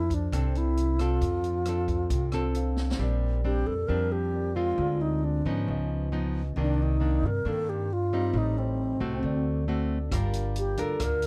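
A dark, dry production frames this romantic, breezy bossa nova at 135 BPM in Bb major, where a pure, close-miked alto flute with vibrato carries the melody over fingerpicked classical nylon-string guitar, a clean tine electric piano in the background and a woody, thumpy upright bass up front, while an open jazz kit with a boomy kick and high-tuned snare plays a fill at 2.8 seconds, drops out at 3.0 seconds and returns at 10.1 seconds.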